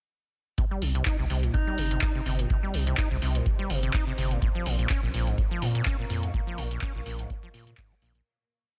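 A dry, deep electronic kick pounds four-on-the-floor at 125 BPM with a 55% swing on the 16ths, entering at 0.6 seconds together with a booming analog drum machine's metallic hi-hats and handclaps in this raw, driving acid house piece in C minor pentatonic. A squelchy, resonant sawtooth acid line with accents and slides runs through overdrive and digital delay over a thick, saturated sine sub bass that pumps off the beat. At 1.5 seconds a smooth alto saxophone with vibrato and scooped notes slips in a brief jazz-style phrase with tape echo, and from 2.4 seconds a moody, detuned pad with chorus and reverb sits dark in the background as the chords move from Cm to Bbm7, with the dense, heavily limited mix fading out over its final seconds.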